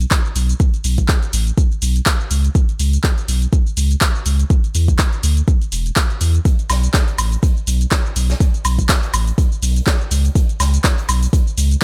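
Deep house with a moody, smooth swing pairs a round, sine-like sub bass pumping under a deep, up-front electronic kick with a dry, layered kit of handclaps, hi-hat, shaker and woodblock, while a natural acoustic big-room kit adds filtered hi-hat and a medium-tuned snare in the background from 6.4 seconds.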